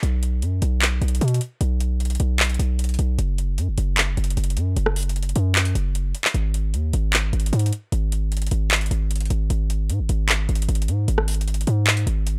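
Trap hip hop in G# minor at 152 BPM with a half-time feel, this dark, eerie excerpt pairs a punchy, heavy 808-style sine bass with a noise layer, fast attack and decaying tail, ranging from F#1 to B2, against an up-front electronic trap kit of handclaps, rim clicks and metallic hi-hats with a tape-warm tone, both playing throughout the 12.4 seconds and repeating the same section from 6.3 seconds in a dry, gritty hardware recording.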